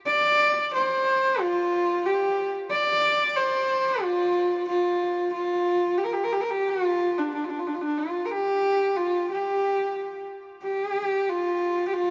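Mongolian traditional music at 91 BPM in a straight 4/4, this solemn, windswept excerpt in G yu mode features a single horsehead fiddle playing solo from 0.1 to 12.1 seconds, ranging from D4 to D5. The bowed horsehair strings sound nasal, husky and earthy, with light vibrato and portamento, held up front yet carrying a distant quality. A huge ambient reverb with a 5.2-second decay surrounds the fiddle, and a brief new section begins at 10.6 seconds before the cut.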